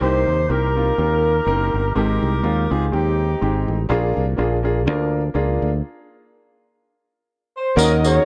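A lightly swung 4/4 groove drives this brief, uptempo gospel excerpt, soulful and hopeful in mood. A mellow horn section carries the melody with light vibrato and tight, roomy ensemble phrasing, joined at the start by a smooth, vibrato-laden alto saxophone that drops out at 3.7 seconds. Underneath, a clear baby grand piano with long sustain and a growly, punchy fingered electric bass hold the accompaniment throughout, moving through Cm7, Abmaj7 and Bb7 before the band hits a stop at 5.8 seconds. Just before the stop ends, the horns return at 7.6 seconds, and a brief burst of vintage, band-limited tambourine arrives at 7.8 seconds. The production is dark and warm, with light reverb and a small-room ambience around the up-front rhythm section.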